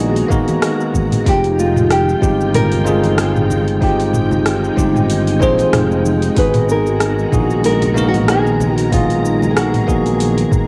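A fingerpicked nylon-string guitar carries the melody from the first moment of this smooth, warm sunset chillout excerpt in F minor, joined at once by a bright, bell-like tine electric piano and a silky, warbling string machine holding mellow sustained chords. The guitar is small and acoustic, while the electric piano sits clean and up front, both colored by cassette tape and analog delay; the strings carry ensemble chorus and the same tape character. A growly, bright fretless bass sustains low beneath them, and a smooth R&B kit with metallic hi-hats, rim clicks, shaker and toms arrives at 0.2 seconds, followed by a soft electronic kick at 0.3 seconds, both re-recorded in a large room. Very quiet acoustic congas sit in a small room at the back of the mix. The groove moves at 94 BPM in 4/4 with a gentle swing on the 16ths, drifting from Abm9 to Fm9 and back to Abm9. Light reverb and digital ambience wrap the whole home cassette recording in a smooth, warm glow.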